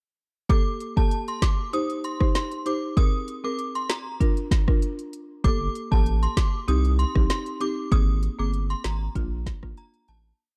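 A dancehall piece in G minor at 97 BPM, tough and sultry in mood, set in a dark, warm production with a digital ambience. An up-front afro-pop drum kit carries a syncopated dancehall beat, with a deep kick answered by a woody snare, crisp hats and rim clicks. A buzzing marimba struck with medium mallets supplies dry, smooth syncopated chords over a cycle of Gmadd9, Cm, Abadd9 and Bb. On top, a vintage FM synth chime plays a syncopated hook, its inharmonic, ringing tone warbling through ensemble chorus, tremolo and tape echo as each note decays with a long release. At 5.4 seconds a thick, saturated sub bass enters with a syncopated low line, sitting up front in the mix, before the piece fades out from 7.9 seconds to its close at 10.4 seconds.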